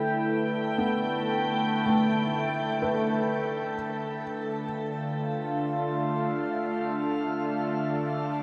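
A morphing, detuned wavetable pad with a phaser and its own reverb sits up front from the start over an A5 chord, alongside a nasal, string-like drone and a felt-muted upright piano whose soft, delayed arpeggios carry audible action noise. This serene, spacious ambient passage in D dorian floats in free time inside a wet shimmer reverb, shifting to Dm at 3.7 seconds. The piano falls away at 4.6 seconds, leaving the warbling pad and the vibrato-laced drone to sustain until 8.4 seconds, in a fragment cut from a longer piece.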